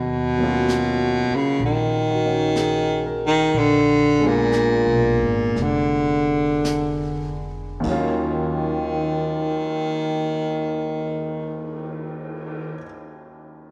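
Jazz ballad in Eb minor, wistful and melancholic, at 48-67 BPM with a swung feel that slows through the first 7.8 seconds, where a roomy subtone baritone saxophone carries the low melody up front over an intimate grand piano with audible action noise and deep bass, a woody, thumpy pizzicato upright bass on gut strings, and a vintage brush kit with dark cymbals, a high-tuned snare and a tight kick entering at 0.7 seconds, set in a moderate echo-chamber reverb as the harmony moves from Ebm9 to Bb7b9 and back.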